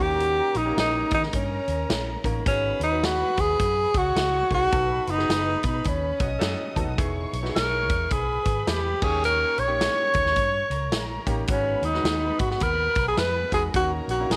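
A breathy, scooping tenor saxophone carries the melody up front in this joyful, uplifting slice of uptempo 1960s-style soul at 106 BPM with a swung feel, backed from the start by intimate sul tasto strings, a very quiet ringing vibraphone under soft mallets, a clear baby grand with audible action noise, and a dark, round, foam-muted electric bass, while a punchy big-room drum kit enters at 0.2 seconds. A band accent lands between 4.7 and 7.0 seconds, where a tight, smooth-topped saxophone section briefly appears in the background from 6.2 seconds. The chords move through D#7, G#m7, B7 and Emaj7 under light studio reverb, and the passage is cut from a longer piece.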